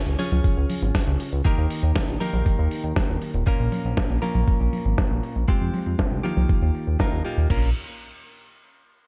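A dry, close-sounding clip cut from a longer italo disco track sets a danceable, bittersweet mood as a glossy, chorused pulse-wave synth bass sits up front beneath clean, direct-recorded electric guitar stabs treated with a low-pass filter and digital delay, while a thumpy, gritty electronic kick with studio reverb joins at 0.4 seconds alongside a dusty sampler-style kit of congas, hi-hat, crash and a medium-tuned snare wrapped in gated reverb, its drums run through a filter sweep until 7.5 seconds as the chords move from Db and Eb to Bbm, Fmadd9 and Ebadd9 before returning to Bbm.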